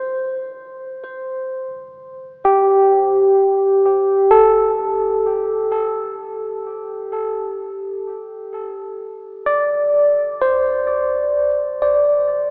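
A bright, barky tine electric piano plays alone and up front through a combo amp, lightly overdriven with phaser and tape echo, in this serene, warm ambient excerpt at 64 BPM in 4/4 with A4 tuned to 438 Hz, moving from C5 to Amadd11 at 3.8 s before the harmony falls away at 11.3 s, all bathed in a vast, echoing cathedral reverb with a small-speaker sound.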